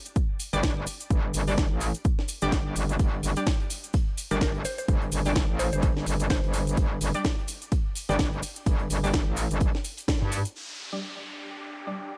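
Swaggering and aggressive, this bass house excerpt drives along at 127 BPM in 4/4 with a swung sixteenth-note feel. A punchy, tape-warm electronic kick sits up front beside a metallic wobble bass, distorted and overdriven with chorus and sidechain pumping, while a house drum kit adds cracking snare and metallic hats and a grainy cabasa rustles in the background. Bold, orchestra-hit-like synth stabs enter at 0.5 seconds, bright and detuned, soaked in built-in reverb and dub echo and pumping against the kick. A huge arena drum kit joins very quietly with a fat snare from 3.0 seconds, and a woody, round mallet-like pluck briefly carries a short melody with subtle chorus and dub echo. After a band accent at 10.1 seconds, an up-front downlifter sweeps in and an ethereal, airy pad warbles through ensemble chorus to close the passage, all set in a small room ambience.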